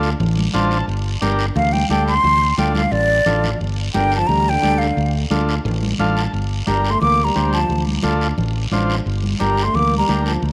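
A buzzy vintage combo organ, an up-front fingered electric bass and a raspy guiro open this driving, danceable cumbia passage, cut from a longer piece, with bright, hard-handed congas joining almost at once in the background of a live room. The clean organ carries a light vibrato and slips in short fills around its accompaniment. At 1.6 seconds a breathy concert flute enters up front with the melody, its tongued, expressive line shimmering with vibrato and lifted highs. At 4.0 seconds, shortly after the second section begins, a close-miked trombone adds a soft-attacked, whispered second line in an intimate pop style beneath the flute. The harmony sways steadily between D minor and G minor, and light small-room reverb gives the whole ensemble a compact, lively feel.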